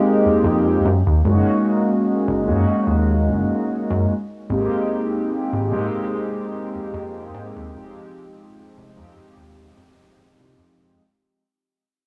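A home-made cassette recording with a moderate spring reverb gives this short vaporwave fragment, cut from a longer piece, a nostalgic, woozy haze as it fades out across its full 11 seconds at a slow 74 BPM with a light swing on the sixteenths. A round, dark synth brass carries the chords, brassy and detuned, coloured by subtle chorus, analog delay and tape character, moving from Abmaj9 through Gb6 and back before settling on Fm9. Up front beside it sits a glossy, nasal chorused synth bass with a saturated, plucky pulse-wave edge.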